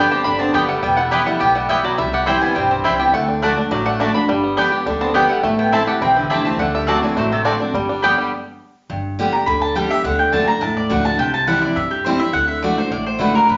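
Bathed in a wet large-studio reverb with a rolled-off top end, this rustic, virtuosic bluegrass excerpt races along at 208 BPM in G major. A twangy, fingerpicked banjo and a woody, double-string mandolin share the melody, while a nasal, metallic slide resonator guitar adds a second line in the background. Beneath them sit a full-bodied, up-front dreadnought guitar with audible finger squeak, a bright second mandolin playing stabs, and a thumpy, dark pizzicato upright bass; after a brief stop at 8.3 seconds, a mandolin takes a solo from 8.9 seconds to the close.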